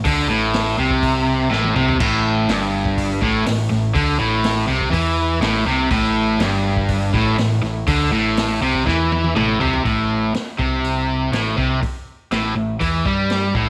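Classic rock with a swaggering, driving feel, this short excerpt pairs a bright, up-front cranked stack guitar riff with a dark, sludgy distorted guitar riff sitting in the background, both overdriven and picked, over a growling picked electric bass with its own overdrive and a vintage acoustic drum kit with a punchy kick, medium-tuned snare and rolled-off top that adds fills at 1.5 and 8.9 seconds, heard in a small room with light reverb.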